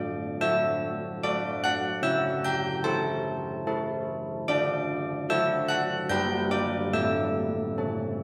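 A hall-like reverb surrounds this short passage cut from a longer piece, yet the old church bells sit close and up front, their bronze, clangorous strike from a worn iron clapper carrying a minor-third overtone and a beating shimmer. Playing alone across a range from G3 to G6, the bells ring out a serene, festive classical tune in D major at 73 BPM in 3/4 with a straight feel. The harmony moves from D to A/C#, back to D, then to G at 6.1 seconds and A at 6.9 seconds before the passage ends at 8.2 seconds.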